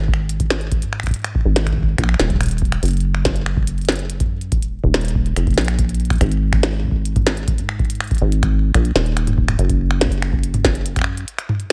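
A rubbery, resonant acid bass opens this playful, glitchy IDM excerpt at 142 BPM, its dark square-wave notes plucked through the filter with a fast attack and sitting up front in a digital ambience. An analog electronic kick, deep and re-recorded in a large room, joins at 0.1 s alongside a glitchy electronic kit of finger snaps, clicky hats, a tiny snare and toms, treated with delay and placed close. Both drum parts carry a tape-warm character, and the kit plays on until 11.7 s after the bass has stopped.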